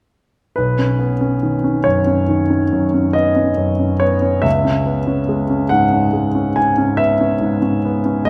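A clear concert grand piano sits up front and carries this brief fragment alone, sounding from 0.6 to 8.3 seconds across a range from B1 to G#5. It is a serene, luminous piece of impressionist classical solo piano in B major and 9/8, moving at a slow 47 BPM counted in dotted quarters with a free, rubato feel. The harmony rests on Badd9 before shifting to C#m7 at 4.4 seconds. The instrument's tone is intimate and natural, with deep bass and the audible noise of the action close at hand. A wet concert hall reverb with a 2.2-second decay surrounds the piano, which is tuned to A4 = 439 Hz, and the passage is cut from a longer piece.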